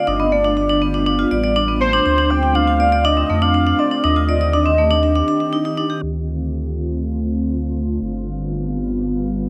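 A straight 4/4 pulse at 121 BPM drives this eerie, melancholic IDM fragment in D phrygian, where a velvety, detuned synth lead with chorus and delay sings the melody and up-front vibraphone arpeggios ring out metallic under medium hard mallets and motor vibrato, both dropping away at a brief break around 5.5 seconds, while a glassy, ethereal FM pad with ensemble chorus and a deep, round sub bass carry on to 9.5 seconds, the pad now shaped by a filter sweep, the whole set in a lush hall reverb.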